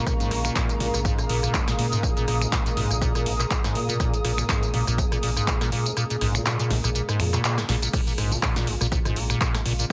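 Heavily compressed and radio-like with light digital ambience, this hypnotic, trippy acid house excerpt in Bb minor runs at 122 BPM with a 16th-note swing over a Bbm7 chord, as a squelchy, resonant square-wave acid bass riff with filter sweep, subtle chorus and delay rides over a round, deep analog bass, a punchy tape-warm kick that drops out from 6.0 to 7.9 seconds, and an up-front drum machine of metallic hats, punchy snare, claps, snaps, tambourine, rim clicks, toms and crash, while a nostalgic, warbling lo-fi pad sits in the background beneath an airy, breathy pad that ends at 8.0 seconds, both pumping with sidechain and chorus, and a band accent lands at 7.4 seconds.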